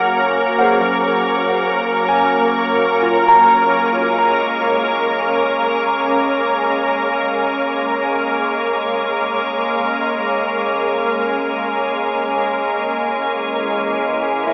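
A bright, up-front organ-like pad holds calm, slow-blooming chords through the whole fragment, its detuned, ring-modulated tone shimmering with ensemble chorus as it moves from Gb to Bbm7 and then settles onto Dbm. In the background, a dark, clean electric guitar plays fingered arpeggios through subtle chorus and tape echo, falling away at 5.9 seconds and returning briefly at 14.5. This peaceful ambient piece drifts in free time, tuned to A4 = 439 Hz, and a plate reverb soaks the mix in a dreamy haze with a cassette and telephone-like character.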